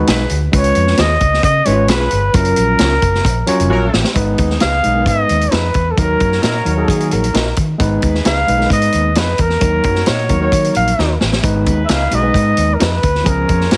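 A breathy, dark trumpet with scooped notes leads from the first moment over a barky, overdriven tine electric piano and a barely audible vibraphone on soft mallets, opening this urgent, passionate uptempo 1960s-style soul excerpt at 132 BPM in G# dorian, where a punchy, foam-muted fingered bass, an up-front vintage drum kit with drum fills at 3.7 and 11.0 seconds, lo-fi guitar stabs through a small old amp and a distant, roomy horn section fill out a heavily compressed, radio-like sound with light reverb.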